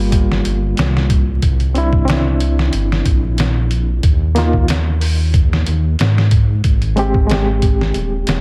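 A lightly swung sixteenth-note groove from a compressed, pitched-down sampler-style drum kit, with a thumpy kick and medium-tuned snare caught in a large room, drives this hypnotic, smoky trip hop fragment from 0.1 seconds, while a deep, rumbling detuned saw bass sits up front with saturated, beating sustain. Over them, an overdriven reed electric piano barks through a combo amp, coloured by fast tremolo, tape echo and vintage 12-bit sampler grit. The dry mix carries a layer of vinyl crackle, and the harmony briefly drops out before landing on a final major-seventh chord.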